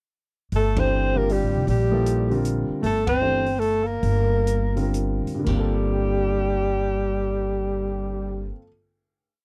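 Cool and hypnotic, this short, complete modal jazz piece in G dorian moves in a swung 3/4 at 109-156 BPM, opening on a Gm11 chord. The mellow alto saxophone carries the melody up front with vibrato, scooped notes and call-like motifs. The breathy tenor saxophone shadows it in octave doubling with a dark, whispered, intimate tone. An upright bass plays a woody two-feel line, and a grand piano comps in syncopated quartal voicings. The drum kit keeps time on the hi-hat with sticks, adding dark cymbals and a boomy kick, and it drops out at 5.6 s. The band hits accents at 0.7 and 3.0 seconds and slows from 2.8 to 5.5 seconds into a final held chord, all captured in a dry, close 1970s-style studio sound with light reverb.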